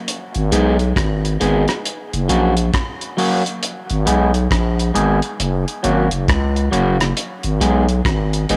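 Roots reggae at 68 BPM in G# minor, serious and laid-back, with a swung 16th feel as a cloth-damped, thuddy drum kit of hi-hat, tight kick and rim click sits beneath a growling, thick FM bass and a twangy, slightly broken-up electric guitar treated with phaser and dub echo, all three up front in a moderate echo-chamber reverb while the harmony alternates between G#m and F# across this 8.6-second cut from a longer piece.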